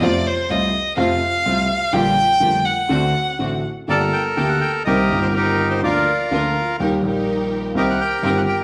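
A rubato tango in 4/4 at 125 BPM, this tense, dramatic fragment opens with a rich, focused bowed violin soloing up front over a warm grand piano with long sustain and biting, lush symphonic string stabs in the background, until a reedy, bright, close-miked bandoneon takes the melody in G minor at 3.9 s, with the whole band captured live in one room under a large, wet studio reverb.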